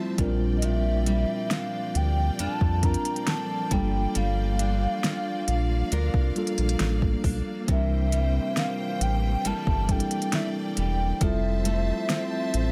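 Sensual and late-night, this short cut from a longer piece is contemporary R&B in G dorian, moving at an unhurried 68 BPM in a straight 4/4. From the start, a mellow tine electric piano lays down the accompaniment alongside a lush, bowed studio string section holding sustained chords with a sidechain pumping effect and a picked steel-string acoustic guitar playing arpeggios with delay, sitting in the background. At 0.2 seconds a round, deep analog bass and an overdriven, electronic R&B drum kit with a soft kick, fat snare and smooth hats arrive up front. A hollow, woody synth lead with a clarinet-like, warbling vintage tone carries the melody from 0.6 seconds, colored by chorus, vibrato and delay. The harmony moves through Bb6, Gm7, C7 and Fmaj7 in a dry, close mix with little reverb.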